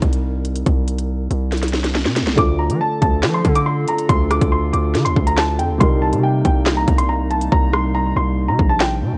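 Opening on a boxy concert grand piano in the background alongside a distorted, heavy 808-style bass and an up-front drill kit of hard-clipped kick, sharp snare, rim click, handclaps and crisp hats roughened by 12-bit sampler grit, this ominous, menacing half-time drill excerpt at 140 BPM in D phrygian brings in a mellow, intimate lead piano with delay and audible action noise plus a nasal, detuned analog pad with chorus at 2.4 seconds, before the hi-hats drop out at 7.5 seconds, all under a worn, warbling cassette-tape sheen with little reverb.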